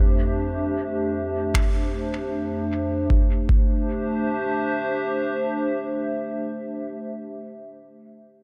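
Ambient dub in free time and C major, hazy and spacious, cut from a longer piece: a warbling, detuned, lo-fi tape-like pad holds dark, nostalgic chords moving from Fmaj7 to C, with chorus and its own reverb, through the full 7.0 seconds, while an up-front, overdriven analog kick drum sounds from 1.5 to 3.7 seconds and a faint finger snap with dub echo flickers at the moment the kick enters, all under a light reverb.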